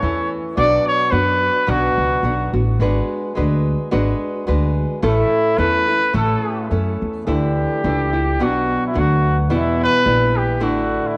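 Romantic and proud, this rubato mariachi fragment in 2/4 at about 108 BPM sets a roomy, classical-style trumpet with light vibrato over fingerpicked nylon-string guitar and a woody, growly pizzicato upright bass with tube saturation; the trumpet sings from 0.0 to 2.5 s and returns at 5.0 s as the music moves from A major to D major at 7.3 s, all bathed in a moderate plate reverb.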